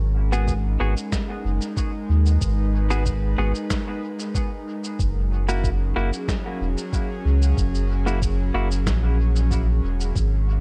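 A compressed shaker and medium-tuned snare, re-recorded in a large room and trailing dub echo, set a straight 4/4 pulse in this spacious, deep ambient dub excerpt, joined moments later by a muffled, thumpy, pitched-down electronic kick, while a round sine sub bass sits up front beneath an airy, breathy pad with chorus and a clean semi-hollow electric guitar playing echoing stabs that stop at 8.7 seconds, over a shift from G#m7 to F#7 at 5.0 seconds.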